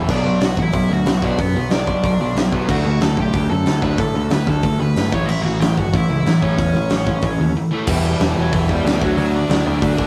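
An aggressive, angry punk rock passage at 185 BPM in E dorian opens at once with two picked guitar riffs, one biting and overdriven but very quiet, the other bright, distorted and compressed in the background, under a growling, punchy overdriven bass that sits up front. From 0.1 s a dark, smooth overdriven lead guitar carries the melody, and a big acoustic rock kit of kick, medium-tuned snare, hi-hat and crash joins with a rolled-off top and big-room sound as the chords move through Bm, D and A. After a brief break at 7.6 s the music turns to a new section on Em at 7.9 s, with a rough rehearsal-room feel and moderate reverb.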